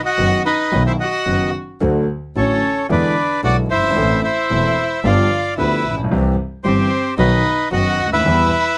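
Closely miked and nearly dry, this melancholic, sultry tango excerpt at 112 BPM in a rubato 4/4 sets a reedy, bright bandoneon melody up front from 0.1 s, shadowed by a clear, distant bowed violin second line with light vibrato and an earthy tone, while a deep, smooth vintage grand piano and a biting, nasal bowed double bass with an airy bow carry the accompaniment and bass through a progression that settles on Em at 8.3 s.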